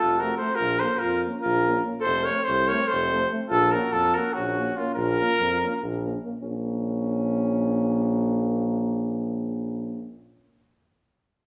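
A mellow trumpet carries the melody up front from the start, with light vibrato, while a vibrato-laden alto saxophone with a soft attack sings a second line beneath it and a distant, roomy tuba holds the bass in this restless, bittersweet Balkan folk excerpt in 7/8 at 289 BPM, set in Bb harmonic minor and moving between F and Bbm. French horn and euphonium join at 0.2 seconds as gentle accompaniment, the horn smooth-topped and set in the background. Trumpet and saxophone fall away at 6.0 seconds, leaving the low brass to carry on until 10.1 seconds, all played with a classical touch by a band together in one room with a lush large-studio reverb.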